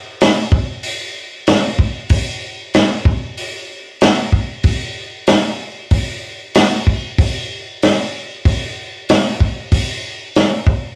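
Rock drum excerpt at 95 BPM in a straight 4/4, heavy and gritty in mood, built from a vintage acoustic kit of hi-hat, kick drum and snare drum playing from 0.2 to 10.8 seconds. The kit sits up front with a punchy kick, a medium-tuned snare and a muffled, rolled-off top that gives it a lo-fi character. A small, moderate booth ambience and the rough feel of a rehearsal-room recording add to the unpolished sound.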